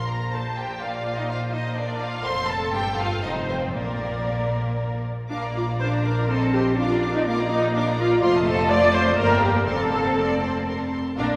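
A quick, cheerful classical-period movement for string orchestra in Bb major and 3/4, moving at around 114-127 BPM with a lively, rubato feel, cut from a longer piece. The violin section carries the melody high above a second violin line, both bowed with vibrato and an intense, clear tone that sits distant in the hall. The viola section provides the accompaniment and is the most present part, up front with a smooth, even, lush sound. Beneath them the cello section plays a clear, intense bass line with light vibrato, while the double bass section adds a deep, rich foundation from further back. Harmony moves mainly between Bb and F, touching on Gm and F7 in the second half, which begins at 5.3 s. A wet church reverb with a long decay of 3.5 s places the ensemble back in a resonant space, softening the whole into a glowing blend.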